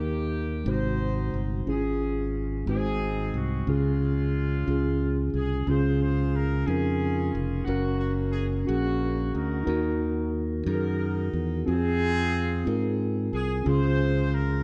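From the first moment, a horn section, mellow tine electric piano and bright fingered electric bass enter together in this hopeful, uplifting slow gospel fragment, set in Db major at 60 BPM in a straight 6/8. The horn section carries the melody with a warm, distant, roomy ensemble sound in a pop style, sitting further back in the mix than the other parts. The electric piano supplies clean, mellow accompaniment that sounds as if heard through built-in speakers, while the bass is punchy, growly and up front, anchoring the low end. The harmony moves from Eb through Ab7 and Db/Ab back to Db, and a second section beginning at 5.7 s travels through Gb, Ebm and Fm before settling on Db at 13.7 s. Light reverb and small room ambience give it the rough character of a home demo, cut from a longer piece and ending at 14.6 s.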